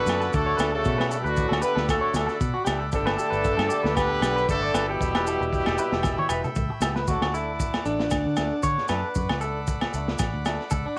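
Carefree and warm, this highlife guitar band excerpt moves at 116 BPM in D major with a light sixteenth-note swing, cut from a longer piece and captured on a home cassette recording with little reverb. An up-front horn section with vibrato and octave doubling carries the melody, while a raspy tenor saxophone with scooped notes plays a second line in the background, both stopping at 6.5 seconds. Beneath them, a twangy, compressed clean electric guitar plays arpeggios, a buzzy vintage combo organ holds sustained chords, and a boxy fingerpicked acoustic guitar adds swing-style accompaniment. A round, foam-muted fingered bass sits under a crunchy, saturated breakbeat kit with a tight kick and rolled-off top, joined by ringing agogo bells and grainy maracas. After a drum fill from 6.0 seconds, the electric guitar takes a solo from 7.1 seconds as the chords move from D through G and Em and back to D.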